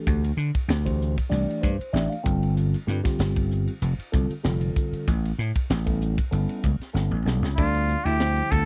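A growly, punchy vintage slap bass sits up front in this short electric jazz fusion excerpt, driving an intense groove at 96 BPM in 4/4 with a light swing on the sixteenths. A tight funk drum kit with a high-tuned snare and tight kick works hi-hat, ride and snare alongside it, closing the opening stretch with a fill from 6.9 to 7.6 seconds. A mellow tine electric piano, clean and treated with phaser, carries the accompaniment through Dsus2, Gsus2 and A7 voicings, slipping in a fill of its own early on. At 7.6 seconds the harmony moves to Dm7 and a bright, nasal trumpet with straight mute enters for a brief solo with vibrato, scooped notes and a slapback echo, while a dark, clean hollow-body jazz guitar picks a second line in the background. The dry, close sound has the feel of a 1970s studio with little reverb, and the passage is cut from a longer piece.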